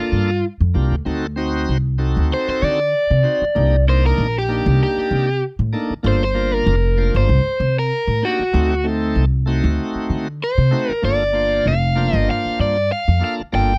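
Soulful and brooding, this straight-eighth soul blues excerpt opens with an overdriven electric guitar playing a bright, picked solo up front from the start until 11.0 seconds, when the piece shifts into a new section. Beneath it, a gritty, shouting tonewheel organ fills out the harmony through a slow rotary speaker over dark minor-ninth and altered dominant chords. A woody pizzicato upright bass sits close and prominent. The whole recording has a dry, close 1970s studio sound with little reverb.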